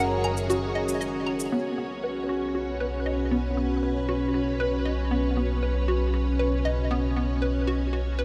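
A dreamy, reverb-soaked mix opens this cosmic, luminous fragment of sequencer-driven ambient space music in a steady 4/4, where a lush vintage string machine holds sustained chords up front over a fat, saturated analog bass. A hollow, bouncy square-wave pluck spins a bright, chorused riff with tape echo, while a very quiet bubbling texture of random filter steps drifts beneath. A mellow, expressive synth lead with vibrato sounds a brief melody in the background until 1.0 seconds, and a dry electronic woodblock and shaker tick through tape echo from 0.2 to 1.5 seconds before the harmony settles onto Badd9.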